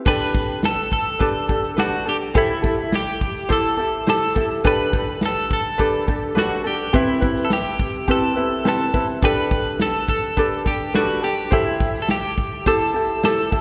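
Acoustic pop with an easy-going, sunny mood, this excerpt from a longer piece moves at a relaxed 105 BPM in 4/4 with a straight feel, set in G major. A light, fingerpicked ukulele opens at 0.0 s and carries the accompaniment up front, cycling through Gadd9, Am7 and Cmaj7. From 0.1 s a bright, twangy twelve-string electric guitar takes the melody, its clean, picked, compressed tone colored by tremolo. A natural country drum kit enters at the same moment, with a tight kick, medium-tuned snare, shaker and crash cymbal giving a small-room acoustic character. The whole performance sits in a church or concert hall, bathed in a wet church reverb with a 2.9-second decay that lends the sound a spacious glow.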